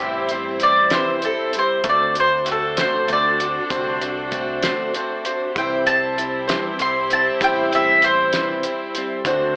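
A picked mandolin leads this folk rock and heartland rock passage, carrying the solo with a round, double-string tone and a slapback echo. Beneath it sit a boxy, woody swing-style acoustic guitar with old strings, a softly bowed chamber string section with light vibrato, and a dark, deep dub electric bass. A cloth-damped drum kit joins at 0.3 seconds with a fat snare, tight kick and hi-hat, its top rolled off. The pace is a slow, straight 6/8 at 65 BPM in C lydian, moving from C to D7 and back to C. At 5.6 seconds a natural-sounding upright piano slips in behind the other parts. The whole is bathed in moderate reverb and an AM radio sound, giving this brief cut from a longer piece a nostalgic, open-road mood.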